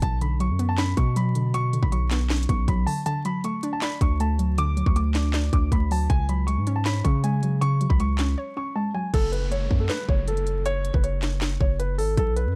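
Vinyl crackle, a faint downlifter and the full arrangement open this menacing, eerie trap excerpt together, set in F# minor at 158 BPM with a half-time feel. A dark concert grand piano carries the melody in a mellow, low-passed register, while a hollow, bouncy square-wave pluck with detuning, chorus and a filter sweep fills out the accompaniment over Bmadd9, D and C#sus4 chords. Underneath, a heavy, aggressive distorted 808-style bass sits up front with a fast attack and a noise layer, joined by an electronic trap kit of hard-clipped kick, sharp snare, crisp hi-hats, handclaps and crash cymbal. Short breaks interrupt the groove, and at 9.1 seconds the pluck drops out as the harmony settles on F#m and the downlifter returns in the background. The mix is dry, with the crackle riding prominently across the whole clip.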